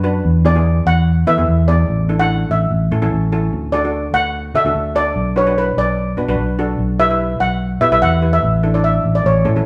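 A double-seconds steel pan played with medium rubber sticks opens this festive, carefree calypso at 147 BPM, its airy accompaniment sitting up front alongside a round, amped fingered electric bass. From 0.5 seconds a second double-seconds pan, struck with hard rubber sticks, carries a bright, shimmering melody above them as the harmony moves from E7 through Asus4, A, Dadd9, Bm and Em/B before returning to Asus4. The band sounds as if it is playing live together in one room, wrapped in a generous large-studio reverb, and this brief passage is cut from a longer piece.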